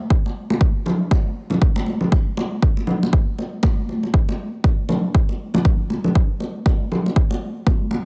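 House groove at 119 BPM in 4/4 with a 57% swing on the sixteenths, smooth and warm in mood, built on a punchy analog electronic kick re-recorded in a small room that starts at 0.1 s, joined at 0.3 s by bright, high-tuned acoustic congas with a thin skin and a distant large-room character, both placed up front in a dry, heavily compressed radio-style mix cut from a longer piece.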